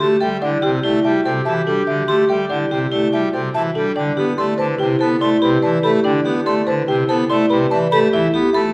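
Hypnotic and bright, this minimalist classical pattern music moves at 144 BPM in a straight 5/4, settling into C major at 4.0 seconds after opening on a D9sus4 chord and touching G13 at 8.1 seconds. A woody, round folk marimba with soft mallets carries the melody over a majestic full pipe organ up front, while a ringing, metallic vibraphone with hard mallets and an airy, hollow concert flute with vibrato spin arpeggios, and a mellow clarinet sits in the background with a second line. The production is dark and warm, bathed in a wet scoring-stage reverb, and the passage is cut from a longer piece.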